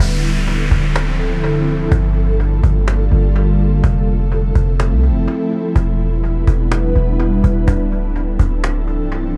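Spacious and ethereal, this atmospheric cloud-rap excerpt floats on an airy, detuned pad with ensemble chorus and built-in reverb, sustaining chords from Dm9 through Gm9, Fmaj7 and Em7, while a deep, boomy 808-style bass sits up front beneath a woody cajon played with soft hands and touched by analog delay, a very quiet, bright fingerpicked concert harp rings only in the first 0.6 seconds, and an electronic downlifter sweeps through until 3.8 seconds in an echo-heavy mix with a cassette-tape character.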